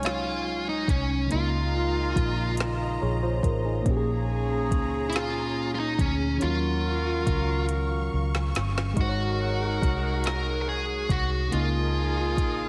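Light reverb surrounds this slow, sultry and yearning six-eight R&B passage at 47 BPM in Eb dorian, where a dark, overdriven lead guitar carries the melody with slapback echo over a mellow FM electric piano with chorus, lush bowed studio strings, tight jazz-style horn stabs, a round, foam-muted fingered electric bass and a tape-warm drum kit with a soft kick whose fill arrives at 7.7 seconds, as the chords move from Ab7sus4 to Db69, Bbm7 and Ebm9.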